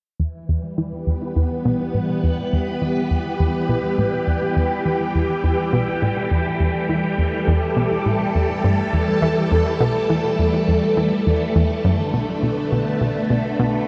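Ambient, sequencer-driven space music with a cosmic, expansive mood, moving at a steady, straight pulse in this short excerpt cut from a longer piece. A swirling, warbling phased string machine sits up front with soft-attack sustained chords shimmering through ensemble chorus and phaser. Meanwhile, a round analog pluck with a sub octave drives a low riff through chorus and analog delay, and a filter sweep moves across a synth arpeggio sound throughout. The dark production is bathed in a huge reverb with a 7.5 second tail, and the harmony rests on Em before shifting to Bm7 at 11.8 seconds.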